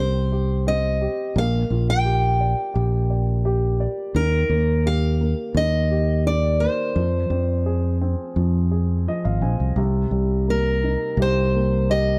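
An acoustic folk-pop ballad in Eb major at 86 BPM, heartfelt and intimate, where a bright, fresh-stringed picked steel-string acoustic guitar carries the melody up front, a woody upright piano with long sustain fills in the accompaniment, and a punchy, direct fingered electric bass anchors the low end through a Cm, Bb6, Ebadd9, Fm and Cm7 progression in a dry, close-sounding excerpt cut from a longer piece.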